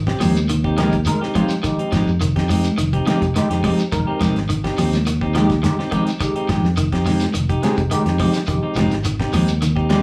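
Funky and defiant, this afrobeat groove moves at 105 BPM in a straight 4/4, sitting on a single Fm9 chord in F minor throughout this brief cut from a longer piece. A round, dark fingered electric bass anchors the low end from the start, joined by a damped 70s drum kit with a fat snare, tight kick and rolled-off top sound, plus hi-hat. Two electric guitars carry the rhythm: one at the edge of break-up picks low arpeggios through analog chorus and tape echo, while a clean, up-front guitar plays picked stabs higher up. Thick-skinned, high-tuned congas sit very quiet in the mix beside a grainy, mellow shekere. At 0.8 seconds a barky, gritty tine electric piano enters with accompaniment, its overdriven tone coming through a combo amp and lush chorus, and a small room ambience with moderate studio reverb holds the band together.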